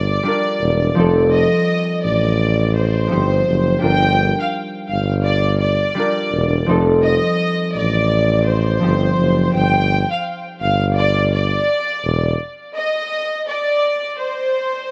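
A bowed violin section carries the melody from the start over a ringing, fingerpicked concert harp and a mellow tuba playing a smooth, classical-style bass, giving this reflective, moody boom-bap hip-hop excerpt in G minor an earthy, up-front string line at 84 BPM with a swung sixteenth feel. The harmony moves between Gm7 and F7, while a lush hall reverb soaks the dreamy mix and a diffuse ambient delay trails the violins. The harp drops out at 9.6 seconds and the tuba at 12.3 seconds, leaving the violins alone through the break until 14.9 seconds.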